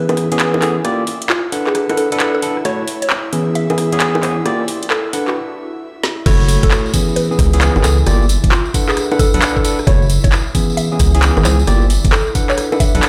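Soulful and moody two-step UK garage with a swung shuffle, where gritty overdriven tine electric piano stabs sit up front beside a woody, mellow mallet-like synth pluck melody with chorus, phaser and tape echo, a breathy pad in the background, and a garage kit of woody snare, metallic hats, handclaps, rim clicks and bongos, building to a break at 5.4 seconds before the drop at 6.3 seconds brings in a rubbery, bouncy square bass, a knocking electronic kick and a jingly tambourine, all in a big, reverberant room.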